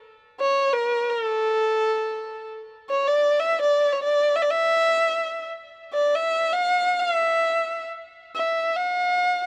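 Closely miked and dry, the recording catches every detail of a single bowed kamancheh placed up front, its clear, focused tone colored by vibrato and portamento. In free time and a festive, warm mood, this short cut from a longer Persian modal piece has the solo instrument enter at 0.4 seconds and sing on until 9.5 seconds, moving between A4 and F5+49c.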